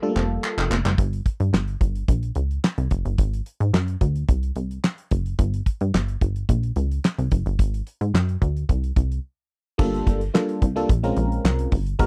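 A dry, close studio sound frames this funky, slick early-eighties boogie funk excerpt in G minor at 109 BPM, where a damped acoustic drum kit with a fat snare, tight kick, dark cymbals, hi-hat, crash and handclaps opens with a fill, a punchy, plucky analog bass with a wave-folded sawtooth bite runs throughout, a clean, fingered semi-hollow guitar riff drenched in lush chorus sits in the background for the opening second, and a glassy, bell-like FM electric piano with chorus and phaser flickers at the start before returning at 9.8 seconds after a short break.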